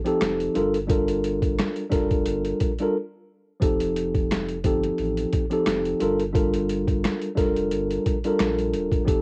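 Boom-bap hip hop in G minor at 88 BPM with a lightly swung sixteenth feel, this short excerpt from a longer piece carries a reflective, dark mood. A mellow tine electric piano opens at 0.0 seconds, sitting up front with a clean, warm tone heard through built-in speakers and shaped by cassette tape and filtering, moving between F7 and Gm9 chords. A sampler-style boom-bap kit enters at 0.1 seconds with a thumpy kick, medium-tuned snare, rim click and hi-hat, its compressed, pitched-down sound gritty and tape-warm, as if re-recorded in a small room. A soft dub sub bass arrives at 0.2 seconds, deep and round with a fast attack and sustained notes blending triangle and square waves, sitting low in the mix. A brief break around 2.9 to 3.6 seconds interrupts the groove before the chords cycle again. Light reverb and a home cassette recording give the whole piece an intimate, lo-fi character.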